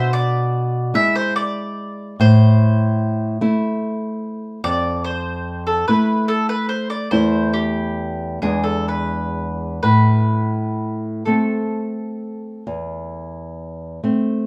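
A woody, double-strung picked mandolin sings a melancholic, elegiac melody over a small, fresh-stringed nylon guitar whose fingerpicked accompaniment carries an occasional finger squeak, in this rubato romantic duo in 12/8, recorded live in one room with light reverb and cut from a longer piece as it moves from E7/B through Am and Fmaj7 to settle back on Am.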